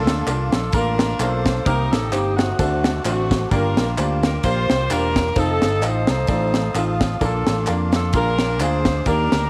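Swung eighths drive this short, jubilant slice of uptempo gospel in four, with a crisp, polished drum kit entering at 0.1 s on tight kick, high-tuned snare and bright ride, while a tube shaker and group handclaps sit back in the small room. A punchy, amped fingered electric bass sits up front beside a close-miked saxophone section that carries the melody with bright tone, tight blend and light vibrato. A clear, slightly worn grand piano comps with short sustain, and a very quiet, flute-like tonewheel organ holds soft chords with key click, percussion and fast rotary speaker, over an uplifting progression from Bbmaj7 through Gm7 and F7 to Bb7, all in light reverb.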